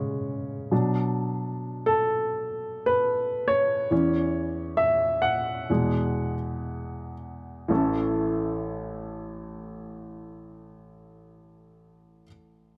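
This heartfelt, tender pop passage, cut from a longer piece, features a baby grand piano alone, its natural, warm tone with short sustain sitting up front in a light reverb. The piano moves through C#sus4, Bm and C#madd11/E to Eadd9, slowing down from 0.7 s to 7.7 s. At 7.7 s it settles on A, opening a new section that runs to 12.0 s, and the piano plays on until 12.8 s.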